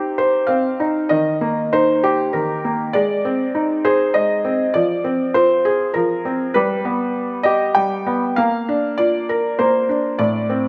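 In a gently rubato 3/4 at around 99 BPM, this short children's lullaby drifts along with a dreamy, gentle mood. A felt-muted upright piano plays alone for the whole 10.7 seconds, spanning A2 to G5 and tuned slightly low to A4 = 438 Hz. Its tone is soft, mellow and intimate, with a vintage quality and a short sustain that gives each note a hushed, close-up presence. The harmony moves from C minor through E-flat, A-flat, F minor and G before arriving on B-flat at 8.4 seconds, with a brief opening phrase giving way to a longer passage from 1.1 seconds. A moderate concert hall reverb surrounds the piano, and the top end is gently rolled off, keeping the sound rounded and calm. The clip is cut from a longer piece.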